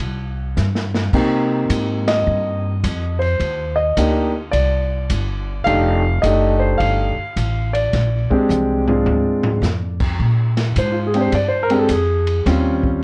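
Woody, thumpy pizzicato upright bass on gut strings and a dark, smooth small-room drum kit with boomy kick open this warm, playful jazz piano trio excerpt at a swung 106 BPM in Bb mixolydian, a drum fill ushering the up-front, deep-voiced concert grand into the melody at 1.1 seconds, with a band accent at 2.0 seconds and a piano solo from 10.2 seconds, heard through light reverb and the worn, warbling pitch drift of old cassette tape.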